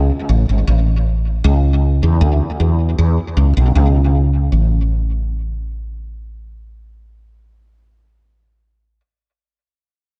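A woody fretless electric bass opens alone and carries the whole 9-second clip from a longer reggae piece, playing by itself in a hazy, spacious mood at 78 BPM in straight 4/4, tuned to A4 = 439 Hz. Its dark, round, hollow-bodied tone sits up front and direct, colored by ensemble chorus and tape echo in light reverb, moving between G#1 and E2. The line shifts into a new section at 4.5 seconds, which runs until 7.6 seconds.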